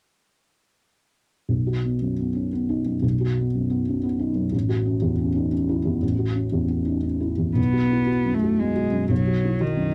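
In a rubato triple metre, this fragile, longing neoclassical fragment opens at 1.5 seconds with a felt-muted upright piano, boxy and hushed with audible action noise, moving from B to F#m7/A, before a dark, bowed cello enters at 7.6 seconds, played sul tasto with vibrato and a smooth top, both parts close and intimate in a dry, lightly reverberant 1970s-style studio sound.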